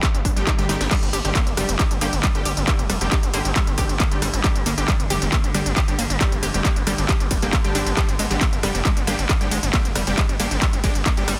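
A heavy, overdriven electronic kick and a layered techno drum kit burst in together at the opening of this excerpt of driving peak-time techno, with a cracking snare, smooth hats, handclaps, rim clicks, crash and ride cymbals, and the hats and cymbals pumping. A faint electronic swell sounds between 0.2 and 0.9 seconds as a drum fill lands at 0.7 seconds, and a gritty, distorted sawtooth synth bass sits up front, pumping in the low register over a G5 chord. At 0.4 seconds an aggressive, thick rave stab enters in the background, detuned and wave-folded, with chorus, its own reverb and a dub echo. Beneath it, a very quiet, round analog pluck plays a bright riff with a short decay, while an overtone-sweeping drone holds low with a moving notch and resonant, moving overtones. The mood is industrial and relentless, with a dry, dense, heavily limited modern sound that keeps the kick and bass pressing forward.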